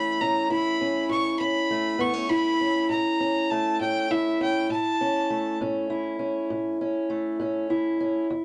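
A dry, close recording in a 1970s studio style, with light reverb, captures this short cut from a longer acoustic country blues piece. Over a rollicking 12/8 pulse at 67 BPM, a dark, boxy parlour steel-string guitar fingerpicks the accompaniment up front, while a single bowed fiddle carries a soulful, intense melody with a biting edge and light vibrato. The fiddle drops out at 5.6 seconds, leaving the guitar alone until 8.4 seconds.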